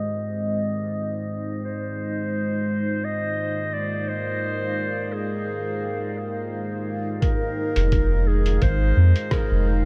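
A dreamy, reverb-soaked haze opens this short ambient dub excerpt in F minor at 86 BPM, where a smooth-topped clarinet carries the melody through dub echo over a deep, detuned pad holding an Fm9 chord under a filter sweep, until a muffled, thumpy kick and a tape-warm lo-fi kit with hi-hat and rim click arrive at 7.2 seconds, followed by a round, soft sub bass at 7.8 seconds.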